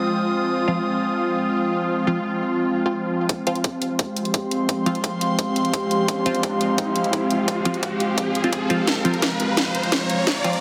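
A swarming, detuned drone and an airy, breathy pad open this tense, mechanical excerpt of dark technical drum and bass. Both pump against a sidechain, with the granular drone carrying its own built-in reverb and the pad softened by chorus. At 0.7 seconds a muted, deep dub chord stab joins, its filter-plucked sawtooth and square tones coloured by phaser, delay and 12-bit sampler grit. The drums land at 3.3 seconds as a build-up begins: a tight, overdriven electronic kick sits up front, while the kit adds a cracking snare and bright hats, each high-pass filtered. A filter sweep moves across the drone, an electronic riser enters at 4.6 seconds, and a drum fill closes the passage. The whole mix has a heavily compressed, radio-like quality set in a digital plate ambience.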